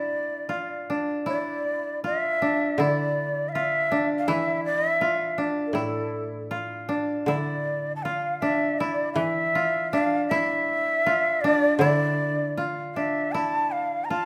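The rhythm floats freely in a rubato 2/4, giving this austere, calm piece of Japanese chamber music an unhurried, breath-paced feel. A breathy end-blown bamboo shakuhachi carries the melody up front, its tone marked by vibrato, tongued attacks with chiff and rolled-off highs. Beneath it, a mellow koto played with fingerpicks plays a second line in its middle register from the very start, its woody sound dry and close. A second koto joins at 2.8 s with a low accompaniment, plucked with fingerpicks and just as present and unadorned. The music moves into a new section at 7.3 s, and a moderate recital hall reverb gives the ensemble a quiet sense of space in this fragment from a longer piece.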